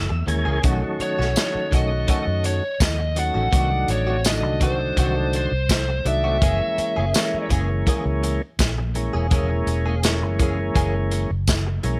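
A dry, close-sounding cut from a longer piece, this laid-back, rollicking soul blues moves in straight eighths at 83 BPM in 4/4 with a light sixteenth-note swing, set in F# mixolydian. A tonewheel organ through a slow rotary speaker opens with a short fill, then supplies smooth accompaniment as the harmony moves from a rootless F#9 to B9, to Cdim7 at 3.5 seconds, and back to F#9. Up front, a crunchy breakbeat kit of kick, snare, hi-hat and tambourine sounds gritty and saturated with a rolled-off top, while a vintage muted fingered electric bass adds a round, punchy low end. A direct-recorded clean electric guitar plays bright, compressed stabs colored by ensemble chorus and digital delay. From 1.0 to 7.5 seconds, a lead guitar through a small cranked amp carries the melody with a dark, overdriven tone.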